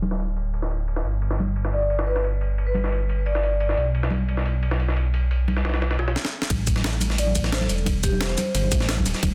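Melancholic and soulful, this liquid drum and bass excerpt rides a deep, rumbling detuned saw bass, gritty pitched-up sampler-style jungle drums with filtered ride and snare, and soft-handed congas through a filter sweep, while a mellow, airy vibraphone with tape echo drifts in at 1.7 s. At 6.2 s a second jungle kit with hi-hat, shaker and snare enters alongside a short drum fill that hands off to a drop at 6.5 s, where a tight, layered electronic kick joins. The vibraphone returns at 7.2 s over a dense, heavily limited mix.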